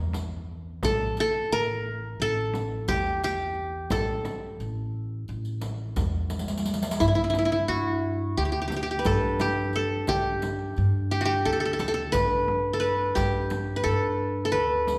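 This excerpt sits in the lingering reverb of a church or concert hall, giving the ensemble a resonant, spacious bloom. It is a stately Turkish makam piece in 9/8, moving at 175 beats per minute counted in eighths with a straight feel. Up front, the qanun carries the melody in a narrow, mid-register span, its triple strings plucked with fingerpicks for a bright, crisp edge. Beneath it, the upright bass plays pizzicato on steel strings with a woody, warm tone, while the large frame drum adds a deep, close and dry pulse struck with soft hands. The riq's jingles sound compressed and saturated, sitting lowest in the mix. A drum fill at 6.3 seconds leads into a new section at 7.0 seconds, where the music settles into G makam rast.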